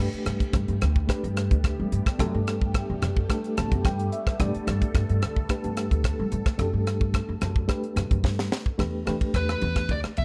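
Upright bass plays up front in this slick, funky stretch of electric jazz fusion, plucked pizzicato with a woody, growly, thumpy tone on steel strings across the whole 10.2 seconds. A tight funk drum kit drives a straight 109 BPM in 4/4 in G major, its high-tuned snare, tight kick, hi-hat, ride cymbal and rim click sounding dry, airy and polished, with a fill from 8.2 to 8.8 seconds. A reedy, worn, slightly out-of-tune electric piano comps through its built-in speakers with a fast tremolo and adds a fill of its own between 3.3 and 4.4 seconds, while a swirling sawtooth analog pad, detuned and treated with phaser and chorus, holds slow-attack sustained chords over the opening Gmaj9. As the harmony moves to Em7 at 8.8 seconds, a smooth, picked overdriven lead guitar enters at 9.4 seconds with a brief melody in a narrow upper range. The production is dark with little reverb, and the passage is cut from a longer piece.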